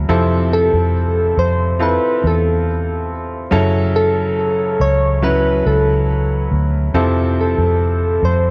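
Hopeful and emotional, this slow 70 BPM pop ballad fragment in straight 4/4, tuned to A4 = 436 Hz, pairs a clear, open concert grand piano accompaniment with long sustain and deep bass against a dark, round, punchy foam-muted fingered electric bass up front, while from 0.5 s a soft, gentle FM synth lead with a fast, decaying attack, vibrato and chorus carries the melody over Fmaj7 and F#m7 chords, all heard in a dry, close 1970s-style studio sound with lossy compression artefacts.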